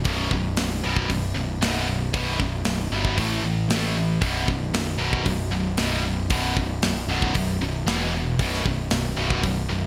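Heavy metal at 115 BPM in a straight 4/4, relentless and aggressive, this short cut from a longer piece centres on a double-tracked, high-gain guitar riff with a bright, distorted bite, moving through B5, A5 and E5 power chords. A tight metal drum kit with a medium-tuned snare and gated reverb sits up front, while a growly, punchy fuzz bass with overdrive anchors the low end from 0.1 seconds. The sound is bright 1980s-style digital production with light reverb and studio ambience.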